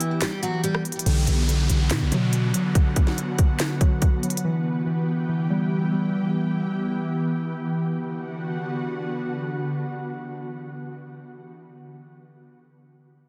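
Eerie and melancholic, this half-time trap excerpt at 142 BPM in B minor opens with a brief bright picked acoustic guitar figure with delay over an ethereal, airy pad that sustains with ensemble chorus and reverb to 10.9 s, while crisp hats, a sharp snare, handclaps, rim clicks and a hard-clipped kick drive the electronic kit until 4.4 s, muted felt-like synth keys with chorus add dark, intimate accompaniment from 1.1 s, a punchy sine 808 bass hits heavily for a moment, and a downlifter sweeps underneath, all in a dense, heavily limited mix with digital ambience.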